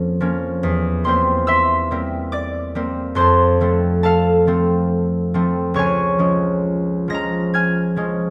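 A reverberant recital hall surrounds this short classical passage, cut from a longer piece, with a lingering 1.4-second decay. A single concert harp sits up front in an accompanying role, its fingerpicked, ringing tone spanning Db2 to Bb6 in an unhurried triple metre with flexible, rubato timing. The warm, lyrical mood moves from a shadowed Bbm/F through C7/E to a settled F at 3.2 seconds, then turns to Db at 5.8 seconds.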